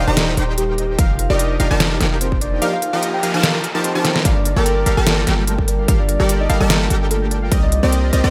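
A boomy 808-style bass with sidechain pumping anchors this lush, bittersweet future bass passage in G minor at 147 BPM with a half-time feel, alongside a punchy detuned supersaw stab riff that also pumps. A round, dark octave-layered synth lead carries the melody through chorus, phaser and digital delay. Beneath it sit a very quiet ethereal pad, softly ringing concert harp arpeggios, and a detuned unison pluck with its own arpeggios. Crisp hats and a deep snare from a dubstep kit join a tape-warm electronic kick that enters at 1.0 seconds, with a faint noise sweep from 3.0 seconds leading into a drum fill at 4.0 seconds over chords moving from Eb6 through F9sus4 and Gm7 to Cm9.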